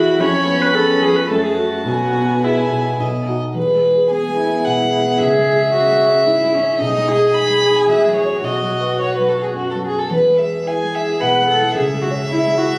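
Graceful and lively, this quick classical-period movement for piano quartet moves in 3/4 at 110 BPM in E major, with a single up-front violin carrying a pure, floating melody, bowed sul tasto with a soft attack. A dark, intimate cello plays a second line with light vibrato and an airy bow, while a mellow concert grand with deep bass and a close, sul tasto viola in the background supply the accompaniment, and a new section begins at 3.6 s. Captured on a phone in the room, with studio ambience, recital-hall reverb and compression, the passage is cut from a longer piece.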